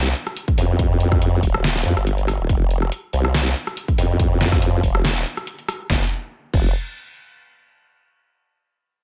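Chaotic and menacing, this short cut from a longer heavy wobble dubstep track lands squarely in a drop that runs from the start to 5.9 seconds, set in 4/4 with a half-time feel and a light swing on the sixteenths. A formant-sweep wobble bass sounds from the first instant, its sawtooth and sine layers pushed through a formant filter with a fast attack, sustained body, compression, chorus and overdrive, sitting up front and ranging from Eb1 to F2. A dubstep drum kit joins at 0.2 seconds with crash cymbal, hi-hat, rim click and a deep snare, layered and placed up front, while a punchy electronic kick drum arrives at 0.5 seconds. Both drum parts carry the character of being re-recorded in a large room, yet the overall mix stays dry with little reverb. A brief new section begins at 5.9 seconds, and the drums stop at 6.6 seconds just before the bass ends at 6.7 seconds.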